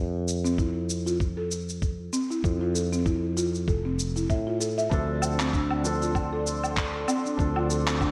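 A lush hall reverb and bright 1980s-style digital sheen surround this earthy, meditative piece of organic downtempo, a short cut from a longer work with a relaxed swing. A growly fretless electric bass sits up front from the opening, pumping under a sidechain, while a gritty, thumpy electronic kick and a compressed, sampler-style kit of shaker, woodblock and handclaps in gated reverb settle in within the first second. A buzzing marimba struck with soft mallets spins woody, round arpeggios through a digital delay. At 4.9 seconds the harmony moves from Fmaj7 to Dm7 as a felt-muted upright piano enters with soft, intimate accompaniment, also pumping and echoing. From 5.6 seconds a warbling, detuned tape-like pad with a slow attack and chorus adds nostalgic, lo-fi sustained chords high above.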